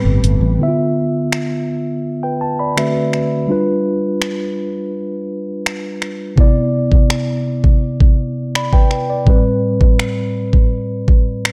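Contemporary R&B at 83 BPM in D dorian, moody and sensual, cut from a longer piece, with a mellow tine electric piano carrying the accompaniment up front from 0.0 s to the end through chords such as Dm69, D13, G7 and Cmaj9. A lush, detuned unison pad with chorus and phaser and a round, foam-muted fingered electric bass both sound only in the opening 0.6 s, while a smooth electronic drum kit with a knocking kick, finger snaps and warm, tape-warm hi-hat enters at 0.2 s and stays prominent. The production is dark with light reverb.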